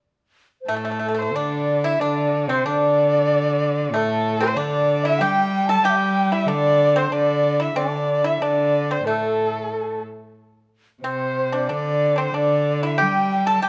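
Lightly reverberant, this festive, pastoral fragment of Chinese traditional chamber music moves at a rubato 93 BPM in D shang mode: a dark, woody erhu carries the melody with vibrato and portamento, a clear, up-front cello bows a smooth second line, a fingerpicked pipa adds dry, percussive plucks, and an airy bamboo xiao sits bright in the background, with each part entering within the first 0.7 seconds.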